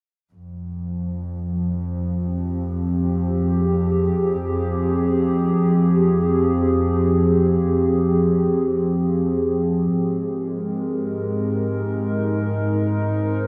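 Bathed in a vast, echoing cathedral reverb, this serene, melancholic ambient excerpt in free time and F minor begins at 0.3 seconds with a soft, intimate, bowed chamber double bass section played sul tasto with light vibrato, joined at 0.7 seconds by an up-front, warbly, detuned tape-like pad with chorus and a lo-fi, nostalgic glow, whose sustained chords shift from Fmadd9 to Abmaj9 at 9.9 seconds.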